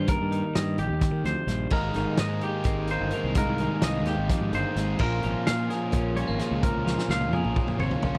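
Math rock and midwest emo in a brisk 7/8 at 257 BPM (counted in eighths), bright and intricate, opening on Ebadd9 before moving through Abmaj9 and Bbm7 in this short cut from a longer piece. A bright, picked twelve-string electric guitar with spring reverb carries the accompaniment, while a clean, twangy electric guitar spins fingered arpeggios up high and a growly fuzz bass with overdrive anchors the low end. A loose indie drum kit, up front with a fat snare, punchy kick and dark cymbals, drives the piece, joined at 1.7 seconds by a double-tracked overdriven guitar riff, before a drum fill at 6.9 seconds, all captured in a dry, close 1970s-style studio sound.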